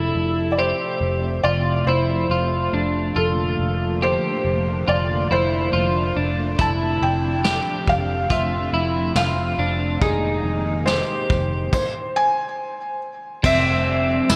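A slow, straight 4/4 pulse at 70 BPM carries this dreamy, ethereal dream pop excerpt in F major, where a soft, felt-muted upright piano sings the delayed melody up front over mellow, chorused string-machine cellos holding full sustained chords. A dark, slightly broken-up electric guitar plays compressed, fingered arpeggios through analog chorus and delay, while a round, foam-muted picked bass anchors the low F, and a vintage brush kit with dark cymbals, tight kick and tambourine joins at 6.6 seconds. At 13.4 seconds a bright, shimmering FM bell with phaser and chorus glimmers in the background, all set in a lush plate reverb with bright 1980s-style digital production.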